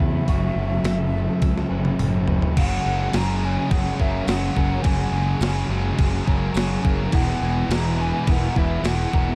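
Hazy and wistful, this shoegaze and dream-pop rock excerpt moves at a straight 105 BPM in 4/4 over F#m7, F#sus2 and Eadd9 chords, with a breathy, mellow concert flute melody carrying vibrato and slapback echo above bright, compressed twelve-string electric guitar arpeggios in chorus, a biting overdriven guitar riff trailed by reverse reverb, a thick, dark fuzz guitar riff in lush chorus, and a growly, punchy fuzz bass up front, while a clean 12-bit drum machine with a thumpy kick enters at 0.3 s and rolls through a fill before a tight, double-tracked distorted guitar joins at 2.6 s and a very quiet, jingly tambourine at 3.1 s, all in a dry, dark mix.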